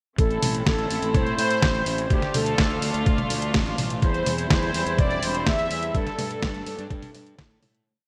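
At 0.2 seconds everything arrives together: a bright, 1980s-style italo disco chorus in A minor at 125 BPM, bittersweet and nostalgic, set in a lush hall reverb. A thumpy electronic kick sits up front in a four-on-the-floor pattern, joined by a detuned 8-bit drum machine playing a disco beat of closed and open hi-hats, a medium-tuned snare and high toms. Underneath, a fuzz-toned fingered electric bass drives eighth notes with an overdriven, growly edge, while a studio string section holds sustained chords with light vibrato and a reedy, gut-string, period tone. Up front, a mellow synth brass carries a motif-based melody in sentence-like phrases, its round, dark sawtooth sound softened by a gentle attack and a filter sweep, thickened with chorus and trailed by delay. The harmony moves from Am to Dm, C/E and Gsus2 as the track fades out from 5.3 seconds, with the brass melody ending at 7.3 seconds and the kick at 7.5 seconds.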